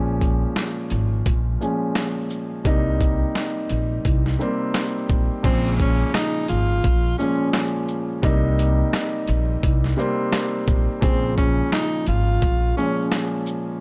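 A swung boom-bap groove from a gritty, pitched-down sampler kit, with thumpy kick, snare, hi-hat, shaker, handclaps and crash, anchors a woody pizzicato upright bass and a dark, mellow grand piano filtered through cassette-tape grain, moving between Bbm7 and Cm7 in a reflective, shadowy mood. At 5.4 seconds a close-miked, jazz-style tenor saxophone takes the lead with a soft-attack subtone, light vibrato and slapback echo, and a very quiet, distant finger snap joins at 6.1 seconds. The dry, dusky production keeps the drums, piano and saxophone up front in this short cut from a longer piece.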